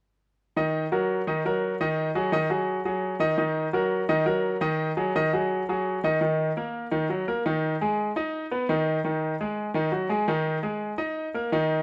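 Set in a moderate large-studio reverb, this short cut from a longer Latin piece is a driving, fiery solo on a brilliant, up-front grand piano, intimate and polished with long sustain and audible action noise, moving from its opening section into a second one at 6.2 s and closing on a suspended dominant chord.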